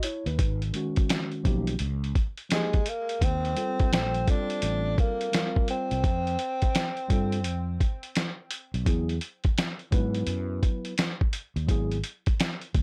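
A breathy tenor saxophone carries the melody from 2.5 to 7.8 seconds in a jazz style, its scooped notes and light vibrato set back in a roomy, distant space with a trail of tape echo. This is a smoky, cool jazz-hop excerpt at 85 BPM in 4/4, swung on the sixteenths and cut from a longer piece. A lo-fi sampler-style drum kit sits up front, pitched down, compressed and muffled, with a thumpy kick, a medium-tuned snare and hi-hat that sound re-recorded in a small room. A fretless electric bass enters at 0.3 seconds, amped and growly with transformer saturation, while a mellow tine electric piano plays clean, direct chords over G#m7, C#add9, a rootless D#maj9, Fsus2 and Eadd9 before returning to G#m7. The overall sound is dry and gritty, like a hardware recording with little reverb.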